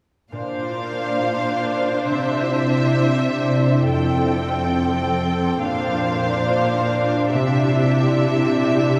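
A lush, vibrato-rich violin section carries a tender, moving melody over an up-front viola section, ringing fingerpicked concert harp arpeggios and a smooth, even cello bass in this slow, rubato cinematic excerpt in Bb lydian at 65-71 BPM, all bathed in a cathedral reverb as the chords move from Bbadd9 through Cadd9 and Fadd9.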